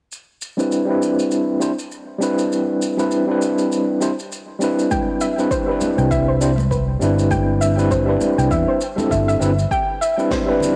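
Sunset chillout in C major at 100 BPM, relaxed and warm, with a lazy swing on the sixteenths, cut from a longer piece. An overdriven tine electric piano sits up front from 0.6 seconds, bright and barky through a combo amp, with medium tremolo, tape echo and a filter sweep over a Cmaj7 chord. Beneath it, a brushed shaker and snare drum from a small, pumping room ticks along quietly. At 4.9 seconds a soft, round pluck adds arpeggios with lush chorus and tape echo, joined by a punchy, overdriven electronic kick and congas set in the background. A dark, amped fingered electric bass comes up front at 6.0 seconds, and a hall reverb with small room ambience gives the cassette home recording a hazy glow.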